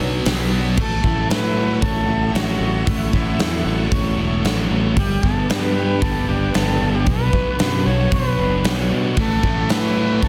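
This wistful, hazy shoegaze and dream pop passage, cut from a longer piece, opens with a swirling, phased vintage string machine holding very quiet chords beneath a thick fuzz guitar riff with lush chorus, a background semi-hollow guitar soaked in reverse reverb, a bright, growly fingered bass, and a tight, double-tracked distorted guitar. A huge, punchy arena drum kit kicks in at 0.3 seconds, and at 0.8 seconds a mellow, airy concert flute takes the melody with vibrato and slapback echo as the tight guitar drops away. That guitar returns at 9.2 seconds over chords moving from Bmadd9 through A6 and G, all in a small room and a dense, heavily limited modern master.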